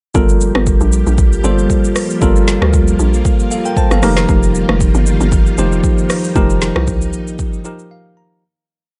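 Amapiano at 116 BPM in G minor with a late-night, hypnotic mood, built as one short piece that moves from Gm9 to F9sus4 and fades out from 6.4 seconds. Hollow, bouncy FM log drum bass bursts sit up front with slides, over an electronic afro-pop kit with a deep kick, woody snare, smooth hats, steady shaker and syncopated rim, given an overdriven edge. A bell-like, bright tine electric piano pushes spread chords and plays a short fill at 7.6 seconds, while a shimmering vintage string machine pad of sawtooth violins holds sustained chords with ensemble chorus and sidechain pumping, all in a dry sound.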